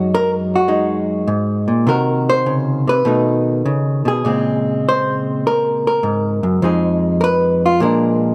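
Swinging and late-night, this short solo jazz excerpt in Bb minor moves at 101 BPM in 4/4 with a firm swing on the eighth notes. A lone hollow-body electric jazz guitar, dark, clean and compressed, sits up front and picks through chords such as Gb69, Cdim, B7 and Bbm9 before settling on Bb7 near 7.8 seconds. A moderate plate reverb with a long tail surrounds the guitar in a rough home-demo mix.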